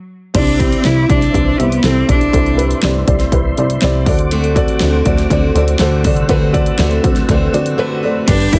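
Anthemic and hopeful, this short excerpt of piano-driven pop moves at 121 BPM in a straight 4/4, shifting from Cadd9 to D7 under a light reverb and a heavily compressed, radio-style sound. A felt-muted upright piano with audible action noise carries the mellow accompaniment. It is joined by a funky analog bass with a plucky filter, a layered electronic drum kit up front with a punchy kick, fat snare and bright hats, and a tonewheel organ in the background holding lightly overdriven sustained chords through chorus vibrato and a slow rotary speaker. A bowed cello with vibrato sings the up-front melody from 0.4 to 2.8 s and returns at 8.3 s, while a full-bodied picked steel-string acoustic guitar adds a riff from 4.3 s.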